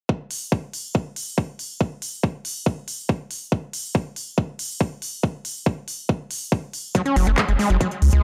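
Alien and driving, this psychedelic trance fragment opens at 0.1 seconds with a punchy, overdriven electronic kick up front, joined by a techno kit of handclaps and smooth hi-hats in a small room. At 6.9 seconds a screaming acid line bursts in, squelchy and resonant, its bright sawtooth tone carrying distortion, chorus, delay, a filter sweep and sidechain pumping. A round, deep analog bass with a nasal edge follows at 7.2 seconds, all within a dark production touched by light reverb.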